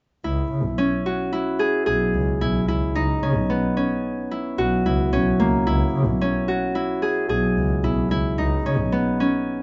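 A bright, ringing Celtic harp sits up front, fingerpicking arpeggios from 0.2 seconds over a single C#m7 chord in an odd five-beat metre with a straight feel. Beneath it a lone bowed double bass enters at 0.3 seconds, rich and expressive with a soft attack, vibrato and portamento, and its sound is both close and distant. The mood of this contemporary instrumental fragment is pensive yet urgent, set in a moderate studio reverb with a rounded top end, and the harp rings on until 9.6 seconds.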